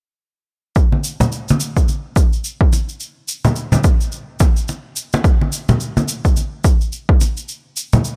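Downtempo excerpt with a meditative, earthy mood and a lightly swung 16th-note feel, built on a punchy, layered electronic kick drum and warm, compressed congas played with soft hands, both up front in a dry mix, while a quieter produced shaker, re-recorded in a small room like the kick, runs beneath from 0.8 to 8.2 seconds.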